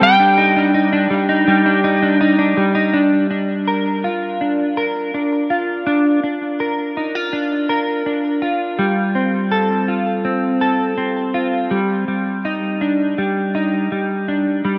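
A straight 4/4 pulse at 82 BPM carries this hazy, ethereal dream pop fragment, tuned to A4 = 439 Hz and cut from a longer piece. A slightly broken-up slide guitar, played with fingerpicks and trailed by tape echo, sounds a brief dark melody on G5 that ends at 2.2 seconds. An up-front, clean electric guitar spins arpeggios through analog chorus and tape echo from the start to 14.8 seconds, moving from Ebmaj7/G to Bb, Fadd9 and back to Ebmaj7/G inside a lush hall reverb.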